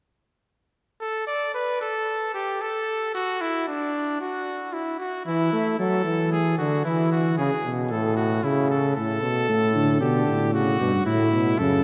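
Classical imitative brass canzona in a stately, elegant mood, in which a bright, close-miked trumpet with light vibrato opens at 1.0 seconds, a clear, up-front trombone joins at 5.3 seconds, and a mellow, distant tuba with a soft attack enters on the bass at 9.5 seconds, all bathed in a lush church reverb in this fragment cut from a longer piece.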